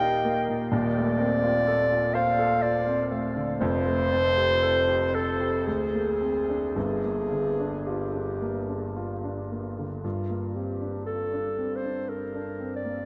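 Classical impressionist duo in G minor, mysterious and hazy, drifting in a rubato 3/4 at 54-64 BPM, with a dark, smooth-topped clarinet singing the melody up front over a polished, present grand piano with long sustain, both heard throughout this short cut from a longer piece, set in a huge reverb with a 7.3 s decay that evokes a vast, echoing space, while the harmony moves from Eb through Fadd9 and Gm7 to a Gmadd9 at 10.0 s.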